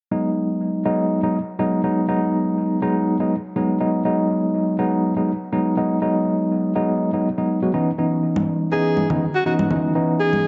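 Clean tine electric piano stabs carry this warm, deep house fragment at 122 BPM, sitting up front with vintage 12-bit sampler grit, a low-pass filter and analog delay, as if heard through built-in speakers. The piece is in G# minor with a lightly swung 4/4 pulse, and the harmony rests on G#m7 before moving to C#m9. Electronic congas appear at 8.4 seconds, layered and overdriven, re-recorded in a large room and kept low in the mix. At 8.7 seconds a breathy alto saxophone solo enters, close-miked and intimate, with a whispered subtone, soft attacks, scooped notes and vibrato in a jazz style, touched by its own analog delay. Light reverb and digital ambience surround the parts, while a cassette tape character cuts away everything above 7.8 kHz.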